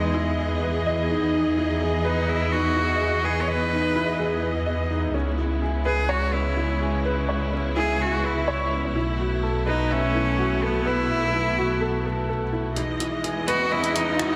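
A boxy, bowed solo cello carries the melody with tape echo over lush, biting symphonic strings, a woody upright piano riff with audible action noise, analog chorus and tape echo, and a smooth bowed chamber double bass section with tube saturation, setting a luminous, tender mood for this piano and strings electronica piece at 126 BPM in E major, soaked in dreamy plate reverb, until the bass drops out at 12.7 seconds and a build-up begins as tape-warm deep house finger snaps and hi-hat enter at 12.8 seconds, with a background electronic riser arriving at 13.5 seconds.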